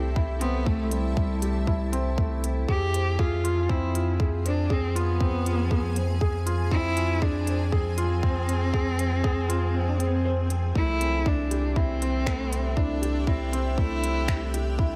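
A dark, bowed solo cello carries the melody with expressive vibrato and portamento in this luminous, hopeful piano-and-strings electronica excerpt, set over a blurred, evolving granular cloud pad that pumps with sidechain and a round, nasal analog bass that also pumps. A felt-muted upright piano repeats a soft, intimate riff through tape echo, while an up-front, tight electronic kick and an organic electronic kit of finger snaps and crisp hi-hats drive a straight groove in a light reverb. The kick drops out at 9.7 seconds, and a very quiet electronic swell sounds from 10.2 seconds before the kick returns at 10.8 seconds.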